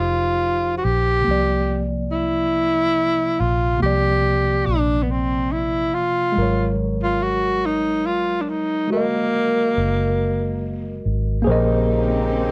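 Late-night and yearning, this slow six-eight R&B fragment from a longer piece sets a breathy, whispered tenor saxophone with scooped notes up front over a worn, slightly out-of-tune tine electric piano with light overdrive and a dark, foam-muted fingered electric bass; once the sax falls silent at 11.0 seconds, a bowed sul tasto string section enters at 11.4 seconds and tight pop-style horn stabs arrive at 11.5 seconds as the harmony settles on Bbm11, captured in a dry, close 1970s-style studio sound with light reverb.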